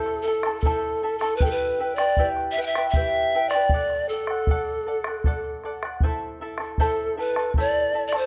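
Wistful and melancholic, this short Andean folk passage in a straight 3/4 sets a breathy, hollow bamboo pan flute melody with vibrato and a tongued chiff up front over a shimmering fingerpicked charango, its double strings partly octave-doubled, and a round bombo entering at 0.1 seconds, all closely miked with light reverb as the chords move from Am through Em and D back to Am.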